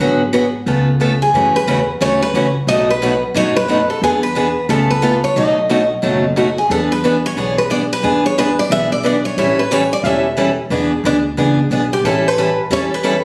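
This lively, swinging excerpt of acoustic string swing in the jazz manouche style is cut from a longer piece and moves with a swung eighth-note lilt in 4/4. A picked steel-string acoustic guitar carries the accompaniment from the start, its warm, up-front, auditorium-sized tone marked by audible finger squeak. Beneath it, a pizzicato upright bass with gut strings adds a woody, dark, thumpy low end. At 1.2 s a second picked steel-string guitar enters with the melody, its bright, boxy parlour voice ringing with fresh strings. The harmony opens on G#m7b5 and C#aug7 before settling into dominant chords such as E7, B7 and A7 across two matching passages that turn over at 6.7 s. A moderate studio reverb surrounds the trio, and the sound carries the character of a phone recording made in the room.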